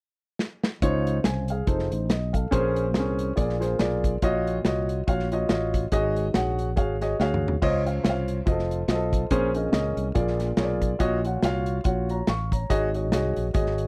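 A dry, close recording with a 1970s studio character frames this excerpt of uptempo gospel, swinging at 142 BPM in Db major with a reverent, hopeful mood. A smooth acoustic drum kit, with a tight kick, medium-tuned snare and rolled-off top, opens with a fill at 0.4 seconds. At 0.8 seconds a dark, mellow grand piano and a warm, direct fretless electric bass enter together, and all three parts sit up front. The harmony moves through extended chords such as Dbmaj9, Bbm9 and Ebm9/Bb toward Ab7sus4, and a second drum fill at 7.2 seconds leads into another pass through the same progression.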